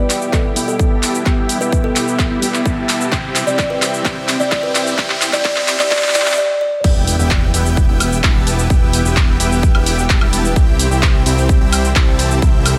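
A straight 4/4 pulse at 129 BPM drives this anthemic, euphoric festival progressive house clip in E minor, with a punchy, up-front electronic kick and a layered big-room kit of hi-hat, handclaps, cabasa, woodblock and crash cymbal. The build-up pairs a woody kalimba melody and a dark, clean electric guitar, both trailing dub echo, with a lush chorused pad and a huge detuned supersaw riff under a filter sweep, while a very quiet riser climbs over a drum fill. After a short break at 6.4 seconds, the drop lands at 6.8 seconds with an impact and a fat, nasal, saturated analog bass, the bass, pad and supersaw all pumping against the kick in a moderate recital-hall reverb over an Em to C progression.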